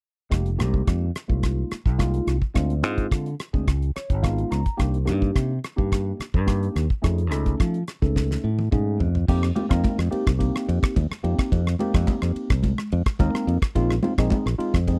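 Intense and nocturnal, this electric jazz fusion excerpt moves in a straight 4/4 with a dry, close 1970s studio sound. A barky tine electric piano, clean and run through a combo amp with a phaser, carries the accompaniment through extended chords such as Fm11, Db9 and Cm9, and plays a short fill at 3.7 seconds. Up front, a growly, bright fingered bass sits alongside a damped 70s drum kit with a fat snare, tight kick and dark cymbals, whose fill at 8.2 seconds leads into a new section. From 9.3 seconds, high-tuned congas with a thick-skinned, vintage tone join in the background as the harmony settles on F9sus4 before returning to Fm11. It is cut from a longer piece.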